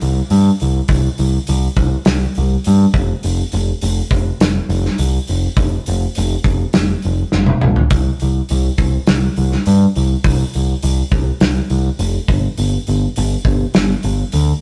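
Quiet-loud alternative rock at 103 BPM in a straight 4/4, this short passage cut from a longer piece carries a cathartic, angsty mood, tuned slightly sharp with A4 at 441 Hz. An overdriven picked electric bass, heard direct and through an amp, sits up front and runs from F1 to G2, its tone warm and overdriven. A loose indie drum kit plays hi-hat, kick drum, snare drum and toms, with a punchy kick and a medium-tuned snare caught in a small, pumping room. Both parts play together from the start to 14.5 seconds, and a drum fill from 7.3 to 7.9 seconds punctuates the section. Light reverb and a rough rehearsal-room sound give the whole take a raw, unpolished immediacy.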